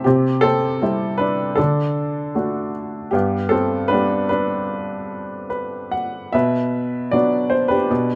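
Classical solo piano in a calm, peaceful mood, this short cut from a longer piece moves at a rubato 77 BPM in 4/4 and G major. A woody, intimate upright piano sits up front, with its action noise audible, and spans G2 to F#5 in light reverb captured by close, detailed microphones. Its harmony passes through C, D and G before turning to B minor as a new section begins at 6.3 seconds.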